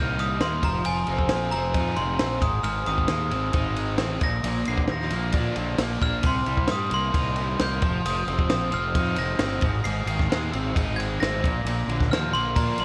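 A worn, warbling cassette-tape sheen with light reverb colors this moody, bittersweet indie rock excerpt at 133 BPM in 4/4, where a sparkling, bell-like glockenspiel struck with brass mallets carries the melody as a solo with slapback echo over a biting, double-tracked overdriven guitar riff, a round, punchy fuzz bass and a compact cocktail drum kit entering at 0.2 seconds with a tight kick, high-tuned snare and dark ride cymbal, all moving through Cm7, Fm7, Ab and Bb.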